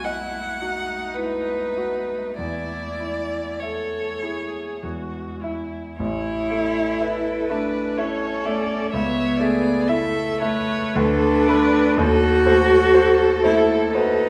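Lyrical and serene, this slow romantic movement for piano quartet unfolds in a gently flexible triple metre, cut from a longer piece. A single violin carries the melody with vibrato and portamento, its rich, expressive tone set at a distance. Beneath it a cello, warm and up front, sings a second line, also shaded with vibrato and sliding portamento. A distant viola fills in the accompaniment with a smooth, even bowed tone, while a clear concert grand piano, placed up front, supports the ensemble with deep bass and an open, short-sustained sound. All four play from the start to 14.3 seconds, moving into a new section at 6.0 seconds and reaching a diminished chord at 12.0 seconds, all within the wet bloom of a recital hall.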